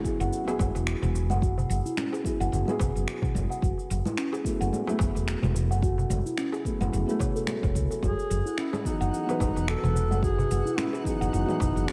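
Organic downtempo with a hypnotic, warm mood, moving at 109 BPM in 4/4 with a light swing on the sixteenths, cut from a longer piece. A felt-muted upright piano, soft and intimate with audible action noise, carries the accompaniment alongside ringing arpeggios from a steel tongue drum struck with soft rubber mallets, both trailed by diffuse ambient delay, while a very quiet electronic impact marks the opening 1.4 seconds. A deep, layered electronic kick anchors the groove with tape-warm electronic cabasa, congas and finger snaps, and a crisp metal-shell darbuka sits close and dry in the background. Up front, a woody, round fretless electric bass with a hollow-body tone pumps with sidechain compression through a lush chorus, and the piano also carries that sidechain pumping. At 8.0 seconds, as the harmony settles from E through F#madd9 onto Emaj7, a breathy solo duduk enters with scooped, folk-style notes through analog delay, joined at 8.5 seconds by a sparkling granular texture with an octave-up shimmer and slow attack. 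The dreamy mix is soaked in a lush hall reverb.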